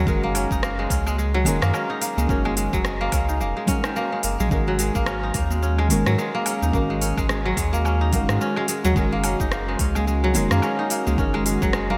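Organic downtempo at 108 BPM with a 16th-note swing, this earthy, hypnotic excerpt pairs a crisp, ringing fingerpicked kora playing up-front arpeggios with delay against dark, warbling chord stabs carrying chorus, delay and sidechain pumping, a round sine sub bass, a deep layered electronic kick, a deep house kit of cabasa, smooth hi-hat, rim click and woodblock in gated reverb, very quiet close and dry bongos and congas, and a smooth, detuned analog pad that joins in the background at 4.5 seconds, all moving from F# to G#sus2 and back within a lush hall reverb and bright 1980s-style digital production.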